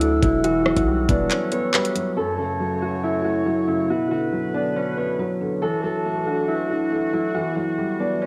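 A thumb-plucked concert harp rings up front with the melody in this cold, ominous drill excerpt in F# phrygian at 139 BPM with a half-time feel. Alongside it from the start are a soft, felt-muted upright piano with audible action noise and a close-miked woodwind section holding vibrato chords, all three colored by cassette tape. An overdriven drill kit with a knocking kick and bright hats plays until 2.1 s, while an aggressive, distorted 808-style bass with a fast attack decays away by 1.3 s. The chords move from Emadd9 through F#m, Bmadd9 and Dadd9, with light reverb and studio ambience around a home cassette recording.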